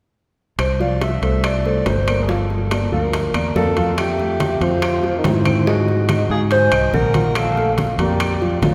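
Bathed in a church's long reverb, this sunny, danceable Afro-Cuban jazz excerpt in F major at 142 BPM sets a dark, distant alto saxophone lead with scooped notes against a punchy, up-front fingered electric bass, a woody upright piano with audible action noise, ringing timbales, saturated bongos and background claves, while a breathy, mellow flute with vibrato joins at 3.6 seconds and soft-handed, low-tuned congas at 4.0 seconds.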